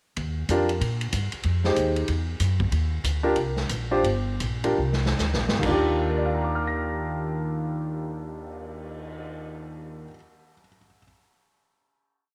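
An upright bass walks pizzicato with a woody tone from 0.2 seconds, alongside a distant, roomy drum kit keeping a sticks-on-ride pattern over a punchy kick, as this brief, joyful and brassy big band swing piece in Eb major opens at 132-189 BPM. An intimate, up-front concert grand piano, its action noise audible and its bass deep, enters at 0.5 seconds with syncopated comping in rootless voicings over chords such as Ebmaj9 and Fm9. The tempo slows, a drum fill leads into a sustained final Ebmaj9 chord at 5.6 seconds, and a moderate echo-chamber reverb surrounds the whole ensemble.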